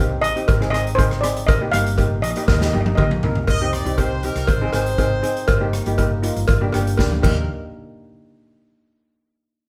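Sunny and festive, this calypso excerpt moves at 120 BPM in Eb major, with a shimmering double-seconds steel pan carrying a dark, smooth melody until 3.1 s over boxy cello pans struck with hard rubber sticks. Beneath them sit a round, punchy hollow-body electric bass, a live-room cowbell and an up-front street-band kit, airy and polished with a boomy kick and dark cymbals. At 3.5 s a brilliant, tight horn section takes up a second line, while drum fills lead into that change and close the passage, all set in a moderate large-studio reverb as the band plays together in one room.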